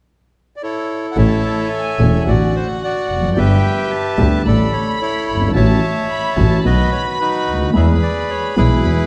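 Tango in A major at 109 BPM with a rubato feel, nostalgic and elegant, in which a bright, reedy, up-front bandoneon carries the melody from 0.6 s and is joined at 1.2 s by a distant, gut-string violin section on a second line, a warm concert grand piano accompaniment with audible action noise, and an earthy, biting bowed double bass, all set in a moderate concert hall reverb within this excerpt of a longer piece.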